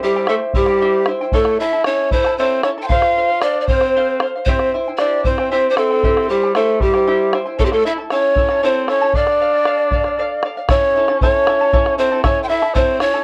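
Andean folk in a straight 6/8 at 77 BPM, this wistful, earthy fragment from a longer piece sets a breathy bamboo pan flute up front on the melody, with soft attacks, chiff and vibrato, over a mellow, smooth-topped cor anglais playing a classical-style second line. A fingerpicked charango adds shimmering double strings with some octave-doubled courses, while a deep, dark bombo sits close and dry from 0.3 seconds, as the harmony moves from C to A, F, back to C, then A and Dm, landing on A as a new section arrives at 10.7 seconds. A wet small-room reverb and the worn, warbly pitch drift of old cassette tape give the whole a faded, nostalgic cast.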